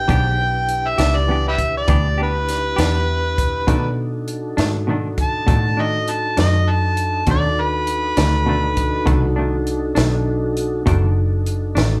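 Smoky and brooding, this slow blues in 12/8 moves at 67 BPM with a straight feel, cut from a longer piece and sitting on an Em7 before shifting to B7#9 at 3.7 seconds. An overdriven harmonica takes the solo up front, gritty and amplified with light vibrato, tongue slaps and scooped notes in a jazz style, carrying the melody until 9.3 seconds. Beneath it, a mellow tonewheel organ holds soft, flute-like sustained chords through a slow rotary speaker, while a semi-hollow electric guitar adds clean, compressed, fingered accompaniment colored by tremolo. A vintage muted fingered electric bass sits up front with a dark, round, foam-muted tone, and a compact cocktail drum kit plays hi-hat, kick and snare, its dry sound marked by a high-tuned snare and a punchy kick. The band plays live in one large studio with a moderate reverb that gives the performance a shared, roomy glow.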